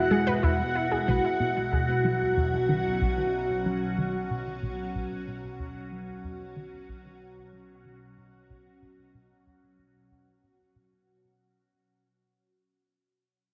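A lush, reverberant haze opens this short cut from a longer piece of ambient, sequencer-driven space music, its wet concert-hall space softening the top end into something expansive and cosmic. At a straight 93 BPM in 4/4, an evolving wavetable pad sits up front with sustained chords, its detuned, morphing tone thickened by ensemble chorus, phaser and shimmer reverb as the harmony moves from Eadd9 to Bsus2 at 1.1 seconds. A bright, detuned unison pluck sketches arpeggios only until 1.0 seconds, trailing delay and shimmer behind it. Beneath, a punchy, funky analog bass carries the riff from 0.1 to 11.0 seconds, its mellow, wave-folded tone dressed in lush chorus and delay. A nasal analog drone hums in the background on the low end, while a bubbling stepped-filter texture holds a resonant F#5 with random filter steps. The drone fades out across the whole passage.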